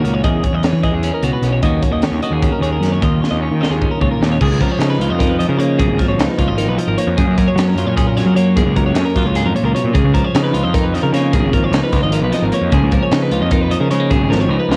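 Fuzz-driven picked electric bass sits up front in this cut from a longer math rock and midwest emo piece, its dark, round, overdriven tone punching through from Ab1 up to Gb3. The mood is intricate and wistful, moving in 7/8 at 303 BPM counted in eighths with a straight feel. A clean electric guitar, picked and compressed with a warm cassette-tape color, carries the accompaniment, while a bright twelve-string electric guitar spins arpeggios high above it, colored by cassette tape and tape echo. The crisp fusion drum kit sounds acoustic in a small, pumping room, with a high-tuned snare, punchy kick, hi-hat and crash, and it plays fills at 3.2 and again at 14.3 seconds. The harmony drifts through chords such as Ebm7, Eb9sus4, Db13 and Gbmaj7, with the opening section giving way to a second at 4.4 seconds. The whole take carries the intimate character of a home recording on cassette.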